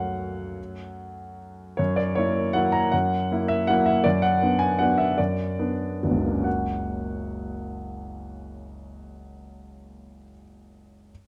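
A warm, smooth grand piano plays alone from the first second, an up-front solo of a classical waltz in 3/4 with a rubato feel, moving between 133 and 169 BPM across a range from F#1 to A#5. The bittersweet, nostalgic harmony moves from F# minor to F#7, slows between 3.5 and 6.5 seconds as it settles on B minor over F#, and arrives on F# major at 6.5 seconds. Close, detailed microphones and light reverb give the vintage piano an intimate presence in this short fragment of a longer piece.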